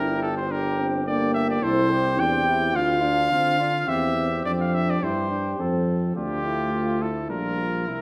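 Noble and warm, this brief rubato classical brass quintet fragment sets a clear cornet melody with light vibrato up front over a soft-edged flugelhorn second line heard at a distance, a dark, close French horn and a mellow trombone in the background, and a roomy tuba bass also up front, as the harmony moves from Gm through C and Dm to a closing Gm7/Bb inside a wet recital hall reverb.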